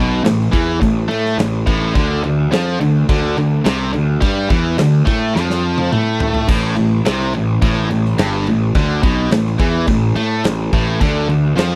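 Heavy metal in A minor at 106 BPM, dark and epic, this dry, close 1970s-style studio excerpt pairs a tight, double-tracked distorted guitar riff moving between A5 and D5 with a growly, overdriven fuzz bass, both up front, over a big acoustic rock kit with a punchy kick, medium-tuned snare, toms and crash in a bright stone room, which plays a drum fill from 5.4 to 6.5 seconds before the riff repeats.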